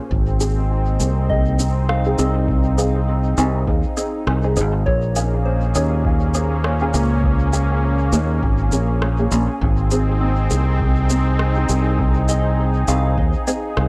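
A light reverb and digital ambience frame this deep, meditative slice of ambient dub, moving at 101 BPM in 4/4 with a swung sixteenth feel over chords of Ab and Bbm7. Up front, a bright, growly fingered electric bass sits over a tape-warm analog kick, while electronic shaker and rim click carry dub echo, and a smooth, detuned sawtooth pad holds sustained chords through chorus and tremolo. Tucked in the background, a muted, full-bodied filtered chord stab with phaser, lush chorus and dub echo enters at 0.4 seconds, joining a pure, mellow FM bell that has traced arpeggios from the opening through chorus, phaser and dub echo.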